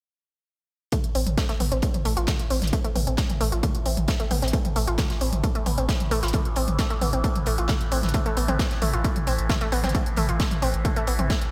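Driving peak-time techno at 133 BPM in A minor, this short cut from a longer piece has a hypnotic, dark mood, sitting on a single A minor chord throughout. An overdriven electronic kick, heavy and layered, anchors the groove from 0.9 seconds alongside a techno drum kit of smooth hats and toms with gated reverb, and an acoustic big rock kit adds a mid-forward, medium-tuned snare and hi-hats with a rolled-off top, its hats pumping against the kick. A deep, thick saturated sub bass holds low A from 1.1 seconds, filtered and pumping under the beat. The riff comes from a nasal, wave-folded analog pluck with a detuned sawtooth and square character, a noise layer, a filter sweep and short decay, treated with chorus and delay. From 2.1 seconds a resonant drone with moving overtones and a slow attack fills the lower middle, its chorus and built-in reverb pulsing with sidechain pumping. The whole mix has a bright, 1980s-style digital sheen with light reverb and small room ambience.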